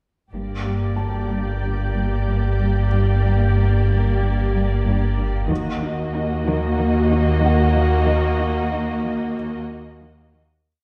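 Eerie and tense, this short, complete suspense film cue moves at 93 BPM in G harmonic minor. Veiled con sordino violins carry a slow-swelling melody and second line over lush muted violas and distant dark French horn chords, while muted cellos pulse an ostinato and hold a bass line doubled by very quiet double basses, all above a deep sine sub bass drone. High dissonant violin clusters hover until 5.1 s, a soft felt-muted upright piano with audible action noise adds sparse single notes from 1.0 s, and the harmony shifts from Gm to Ebm at 5.5 s before a fade-out from 8.1 s in a reverberant recital hall heard from further back.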